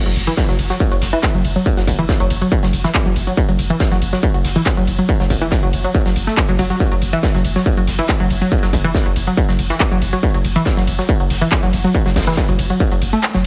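A tight, sawtooth-and-square synth riff opens this short cut of driving, industrial peak-time techno, sitting up front with a detuned, chorused sheen, filter-plucked attacks, digital delay and a sidechain pump. Beneath it, a deep, thick sub bass rumbles on a single low note, overdriven and low-pass filtered so it stays rounded while pumping in step with the groove. An electronic techno kit of handclaps, smooth hi-hats and ride cymbal arrives at the same moment, its hats and cymbals pumping too. A natural-sounding vintage kit with a medium-tuned snare, hi-hat and shaker slips into the background, high-pass filtered across its hats, snare, percussion and room. A layered, distorted kick enters at 0.4 seconds and hammers up front until it drops out at 13.2 seconds. The mix carries a stone-room ambience and a heavily compressed, radio-like squash that keeps the straight 4/4 pulse relentless.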